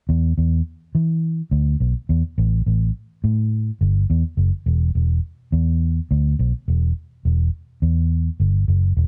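A dark, foam-muted vintage electric bass, played with the fingers and sitting round and punchy up front, carries this smoky, soulful blues clip in E minor at 105 BPM with a light swing, ranging from E1 to E3 in a dry, close sound across its roughly nine seconds.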